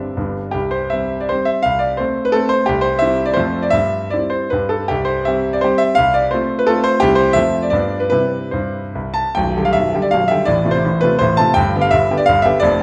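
Proud and rustic in character, this short romantic classical piece is a triple-time dance in 3/4 and C major, built on dotted rhythms and played with a flexible rubato that lets the tempo drift between 137 and 189 BPM. A clear grand piano carries everything alone from 0.0 to 12.8 seconds, ranging from B0 up to A5. Its tone is smooth with a vintage character and short sustain, and it sits up front in the mix. A wet recital hall reverb with a 1.6-second decay surrounds the instrument. The harmony circles around C, F and G, touching a G7 before settling on C. A new section begins at 9.4 seconds moving through G/B and F/A toward G, and the recording is cut from a longer piece.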